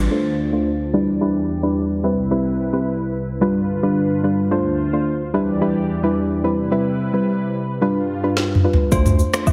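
A straight 4/4 afrobeats groove at 109 BPM in D dorian, this hypnotic, sultry excerpt floats on a soft, gentle pluck with chorus and a warbling vintage pad with lush chorus, both under a filter sweep while the chords cycle Dm7, Em7, Cmaj7 and G7. The up-front electronic drum kit, with its deep kick and woody snare, arrives with a fill at 8.4 seconds. At 8.9 seconds a dark, sine-like bass returns and close, dry agogo bells and woodblock join as the progression comes back to Dm7. Light reverb sits over a heavily compressed, radio-like sound with a faint mains hum.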